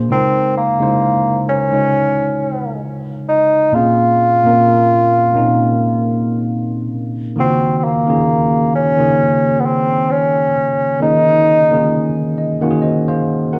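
R&B with a soulful, smooth mood and a gentle sixteenth-note swing, this short cut from a longer piece sets a warm, classical-style solo bassoon up front, singing the melody with a smooth top over a tine electric piano. The piano is worn and slightly out of tune, heard through a combo amp with a lush chorus as it moves through Db69, Bbm7 and Ebm9, then takes a brief fill from 11.9 seconds, overlapping the bassoon's final moments before it drops out at 12.3. Light reverb and small-room ambience surround the pair, and the whole recording carries the warbling pitch drift of worn, old cassette tape.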